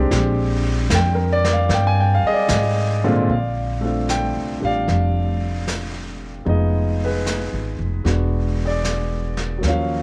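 A baby grand piano with long sustain and a woody, pizzicato upright bass sit up front from the opening of this intimate, tender jazz ballad excerpt at 76 BPM with a gentle swing, joined at 0.1 s by a distant, roomy brush drum kit with a rolled-off top on snare and hi-hat, all in light reverb and small-room ambience as the harmony moves from Bb13 through Bbmaj9 and Fm7b5 to E9.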